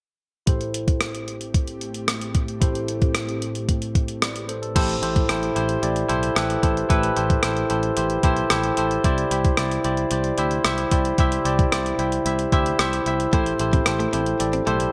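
A barky tine electric piano and a thumpy, up-front 12-bit drum machine with gated reverb open this moody, urgent 1980s-style pop excerpt in A minor at 112 BPM at 0.5 s, with a brief ethereal, detuned pad in the background, a round fingered electric bass joining at 4.8 s, an electric piano fill, chords moving from Am7 to Cadd9 and back, and a clean, compressed electric guitar riff appearing at 13.3 s, all set in bright digital production with a wet plate reverb.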